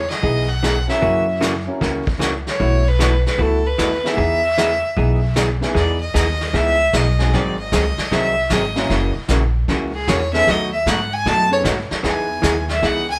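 A clear, biting fiddle with light vibrato carries the melody and takes a solo from 5.8 seconds in this playful, swinging western swing excerpt in E major at 152 BPM, backed by thumpy pizzicato upright bass on gut strings, a vintage brush kit with a tight kick and rolled-off top, a dark, clean, compressed hollow-body archtop guitar, and a woody upright piano with long sustain in the background, all captured as a band playing live in one room with moderate reverb.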